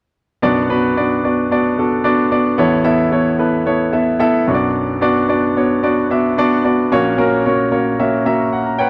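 A clear baby grand piano opens the excerpt at 0.4 seconds, playing accompaniment in a pop setting at 111 BPM in straight 4/4 time. The key is B minor, and the mood is driving yet bittersweet as the harmony moves from Bm to Aadd9, back to Bm, and then to F#/A#. The piano spans a range from A1 to A#5, and its tone is polished and present, sitting up front in the sound. The room has a light reverb within a dry, close recording that evokes a 1970s studio. At 8.0 seconds the piano adds a short fill before the passage ends at 8.9 seconds, cut from a longer piece.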